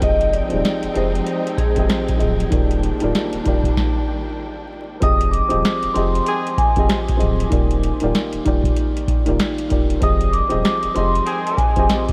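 A booming analog drum machine drives this dark, moody boom-bap hip-hop excerpt with a swung groove of deep kick, crisp snare and metallic hi-hats, all sitting up front with a small-room character. A saturated, thick sub bass holds the low end, while a dark upright piano plays intimate, woody accompaniment with audible action noise and a slightly detuned, vintage tone. Over the top, a ringing vibraphone carries the melody with a slow motor vibrato and a touch of delay. Lush bowed symphonic strings hold sustained chords in the background until 5.0 s, just after a stop in the groove at 3.8 s, and a pop-style horn section adds two brief stabs in the second half, the last at 11.3 s. The whole mix is dreamy and soaked in a huge ambient reverb, with vinyl crackle adding a worn, nostalgic haze.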